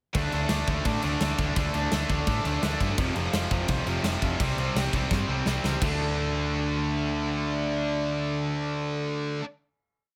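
An up-front, double-tracked overdriven electric guitar drives eighth-note power chords through this short, angry and urgent punk rock piece, backed by a second double-tracked, high-gain distorted guitar ringing chords in the background, a dark, round hollow-body bass pushing eighth notes, and a big, punchy acoustic drum kit with bright cymbals pounding a fast punk groove until a fill at 5.1 seconds leads into a final chord held to 8.6 seconds in a dry room.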